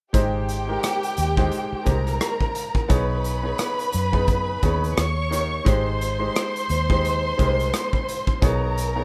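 A rough home-demo mix with light reverb frames this lush, 1970s-style soul passage, cut from a longer piece, in Ab major at 87 BPM in 4/4 with a 58% swing on the sixteenths. From 0.1 to 9.0 seconds all four parts play together. A bowed studio string section carries the second line with expressive vibrato and an ensemble sheen. A bright, brilliant grand piano with a slightly worn character supplies the accompaniment. Underneath, a vintage foam-muted fingered electric bass sounds dark, round and punchy, while an acoustic drum kit with a tight kick, hi-hat and rim click breathes in a pumping studio room. The mood is warm and lush, with the harmony moving through Abmaj7, B69 and Eb7 before returning to Abmaj7 and B69.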